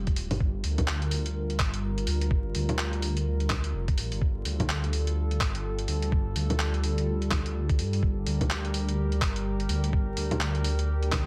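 This future garage excerpt has a wistful, melancholic mood, resting on a single Gm7 chord with a swung 16th-note feel and a layer of vinyl crackle under light reverb. A warbling, nostalgic pad with a slow attack holds mellow chords through chorus and its own reverb, pumping against the sidechain, while a deep, rumbling detuned saw bass sits up front with a saturated, beating edge. A muffled, thumpy electronic kick and a lo-fi sampler-style kit of bongos, handclaps and hi-hat, both compressed and re-recorded in a large room, drive the groove.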